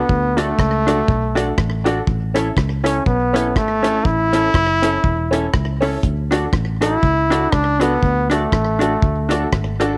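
A brilliant, close-miked trombone with vibrato carries the melody over a round, foam-muted fingered electric bass from the start of this upbeat, joyful ska piece at 121 BPM in D major, joined at 0.1 seconds by a deep reggae drum kit of tight kick, hi-hat and rim click with slapback echo, and at 0.4 seconds by a clean, compressed hollow-body jazz guitar and woody, short-sustain upright piano stabs, heard in a small room with light reverb and a faint mains hum.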